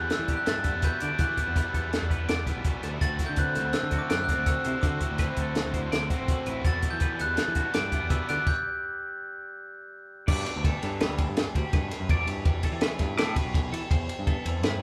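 A bell-like glockenspiel played with brass mallets carries a ringing melody over a compact cocktail drum kit, a growling overdriven fingered bass, bright twelve-string arpeggios with spring reverb, a twangy guitar through a small old amp in the background, and a double-tracked overdriven riff guitar, opening this playful, intricate math rock and midwest emo excerpt at 165 BPM in 5/4, in G major. The band plays live in one room with a moderate large studio reverb, the drums sitting up front with a high-tuned snare, punchy kick and rolled-off top, as the harmony moves from Em9 to D9. A stop at 8.5 seconds cuts the riff guitar, the glockenspiel ends at 9.9 seconds, and from 10.3 seconds the remaining parts move through Gmaj9, Em9 and Cmaj7/E.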